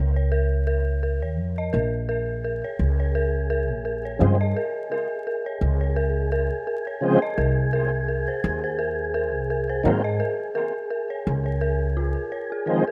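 Brooding and smoky, this short trip hop excerpt moves at 85 BPM in 4/4 with a light swing on the sixteenths, sitting in Bb minor as the chords pass from Db through Bbm7 and Ab/C before returning to Db. A dark, detuned synth bell opens the piece with eerie, inharmonic arpeggios, its fast attack and decaying tail softened by chorus and digital delay, while a woody pizzicato upright bass with steel strings anchors the low end up front from the start. A breathy, wind-like tuned noise texture drifts in at 2.4 seconds, holding a single sustained note with a slow attack, long release and its own reverb. At 4.2 seconds an overdriven tonewheel organ arrives as a thick, gritty accompaniment, colored by chorus vibrato, a slow rotary speaker, tremolo, a low-pass filter and tape echo. Light reverb and digital ambience surround the rough home-demo mix, and vinyl crackle adds a worn, dusty patina.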